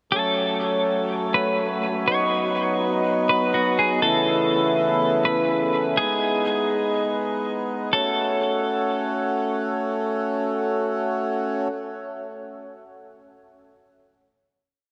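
A half-time pulse in 4/4 sets the pace for this short, complete piece of atmospheric cloud-rap, spacious and hazy in mood. A reedy, breathing pedal harmonium sits up front with dark, smooth sustained chords, moving from F#m through B, Aadd9 and G#m before coming home to F#m. Over it, a clean, picked semi-hollow electric guitar plays a sparse looping melody that repeats like a sampled phrase, its scooped, compressed tone made lush by chorus, softened by a low-pass filter and trailed by a diffuse ambient delay. From 1.0 to 6.0 seconds, a very quiet wind-like noise texture drifts in with a slow attack and long release, adding an airy, breathy layer alongside the other two parts. The final chord arrives at 7.9 seconds, and once the guitar stops at 9.4 seconds, the harmonium holds it alone to the close. The whole mix is soaked in a huge, wet reverb that gives it a dreamy quality.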